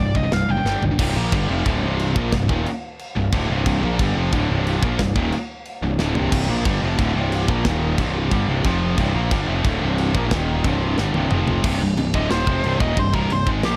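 A driving 180 BPM heavy metal groove in straight 4/4 settles into half time from 1.0 seconds, pushing this heavy, dark C minor cut through drum fills and riffs built on Cm and power chords. A tight metal kit with bright cymbals and a medium-tuned snare sits up front alongside a growly, punchy fuzz bass, while three scooped, high-gain and tight distorted rhythm guitars pick the riff in the background, one of them double-tracked. A nasal lead guitar with a parked wah and tape echo flickers at the start, then returns for a brief solo at 12.2 seconds, all wrapped in a dark studio reverb.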